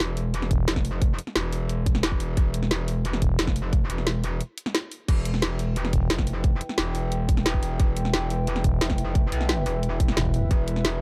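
Dark technical drum and bass at 177 BPM in E Phrygian, this mechanical excerpt drives a metallic, distorted wobble bass with sidechain pumping against a tight electronic kick and a kit of woody snare, bright hats and crash, while a growling FM bass punches in briefly before sustaining from 8.6 seconds, and a moody, detuned analog pad with chorus enters over Em from 5.5 seconds after a short break at 4.4 seconds.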